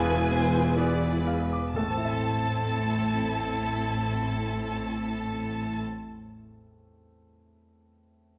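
A brief, passionate and brooding fragment of a romantic movement for piano and orchestra opens with everything sounding at once: a clear, polished concert grand carrying the melody over a full body of bowed strings and very quiet timpani. The tempo sits around 62 BPM in 4/4 with a rubato feel in A minor, and the opening seconds slow down over an E7b9 chord before settling onto A minor at 1.8 seconds. The violins split into a lush melody line and an expressive second line, both with vibrato, while violas add close, expressive accompaniment and the cellos and double basses lay down a smooth, even bass, the cellos sitting in the background. The timpani, struck with hard mallets, stay articulate yet barely audible beneath the ensemble. The orchestra falls away at 5.8 seconds, leaving the piano alone with its deep bass ringing until 8.4 seconds. A recital hall reverb bathes the sound, giving this cut from a longer piece a spacious, resonant finish.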